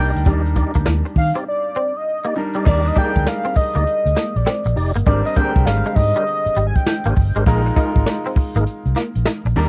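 This new jack swing excerpt from an R&B track moves at 100 BPM in 4/4 with a swung sixteenth-note feel, and it sounds bouncy and slick, with the character of a home cassette recording and light reverb. An up-front, octave-doubled lead with a bold, retro sawtooth-and-triangle tone carries the melody with chorus, vibrato and tape echo until 7.2 seconds. Beneath it, a clear baby grand piano with short sustain supplies accompaniment, a direct-recorded clean electric guitar plays a twangy, compressed picked riff with ensemble chorus, and a percussive tonewheel organ adds stabs with key click, chorus vibrato, fast rotary speaker and tape echo. A dark, foam-muted fingered bass sits round and punchy near the front, while a jazz brush kit enters at 0.2 seconds with an airy small-room sound, a medium-tuned snare, boomy kick, hi-hat and crash. A break falls between 1.5 and 2.7 seconds, and the harmony moves from Ebmaj7 to Abmaj9#11 and then Bb7sus4.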